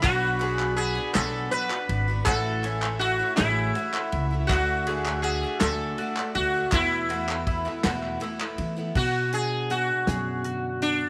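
Light small-room reverb gives this nostalgic, hopeful indie folk fragment in 6/8 an intimate glow. A bright, buzzing sitar carries the melody up front over a picked, octave-doubled twelve-string guitar, round mandolin arpeggios in the background, and a very quiet brass ensemble holding sustained chords with light vibrato, while a woody, thumpy pizzicato upright bass, a natural country drum kit with a punchy kick and crisp, band-limited group handclaps fill out the bottom and the back until the claps stop at 8.6 seconds. At 9.0 seconds the twelve-string and brass have dropped away, and a dark, fingerpicked steel-string guitar with old strings takes over the accompaniment.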